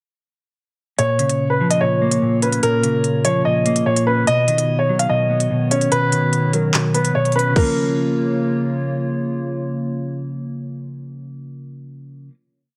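A short drill-style hip hop piece at 146 BPM in a half-time feel, set in Bb phrygian with a cold, tense mood. A concert grand piano sits up front with a natural, deep-bassed tone, playing a looping melody between Bb4 and F5 that repeats like a sampled loop under a touch of delay. Beneath it, a dark, clean electric guitar plays a compressed, fingered pedal-note arpeggio in eighths, also looped, with a subtle chorus. From 2.1 seconds a warbling, nostalgic, lo-fi pad with a slow attack and long release holds sustained chords, colored by chorus and its own reverb. The drill kit is electronic and gritty with 12-bit sampler crunch, driving a hard-clipped kick, handclaps, crash and crisp skipping hi-hats with fast rolls until it drops out at 7.7 seconds. The harmony moves from Bbm to Badd9 and back to Bbm, which becomes a final chord at 7.6 seconds as the instruments fall away under light reverb.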